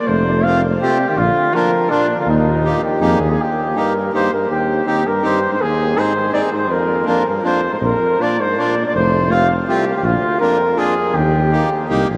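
In a 3/4 at 163 BPM with a loose, rubato feel, this jolly, festive alpine dance band piece in E-flat major is cut from a longer work. A warm, distant flugelhorn carries the melody up front with a touch of delay. Beneath it, a mellow euphonium with light vibrato and a smooth top plays a classical-style second line. A reedy single-reed accordion with dry tuning fills in clear accompaniment. A close-miked tuba anchors the bass up front, dropping out at 3.4 seconds and returning at 7.8 seconds. The whole mix is soaked in a huge, dreamy reverb that lends a spacious, floating quality as the chords move through F, B-flat, E-flat, C minor and A-flat.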